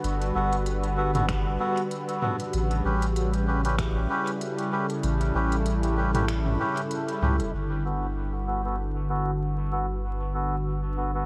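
This hazy, spacious ambient dub excerpt opens on a warm, detuned sawtooth pad holding soft-attack chords with chorus. Beneath it sits a deep, round sub bass that blends triangle and square tones. Alongside them, an organic electronic kit of finger snaps, crisp low-passed hats and toms, recorded again in a large room and thrown into dub echo, moves with a light swing. A reedy, breathy, nasal melodica plays dark, low-passed stabs that feed into the same dub echo, and a very quiet, overdriven and punchy layered electronic kick appears only briefly, from 1.3 to 3.9 seconds. The harmony moves from Gmaj7 to A7 and settles back on Gmaj7 at 7.5 seconds, where the drum kit stops and a filter sweep passes over the pad while bass and melodica carry on. Vinyl crackle, light reverb and a digital ambience hang over the whole piece, and the pad, bass and melodica sit up front.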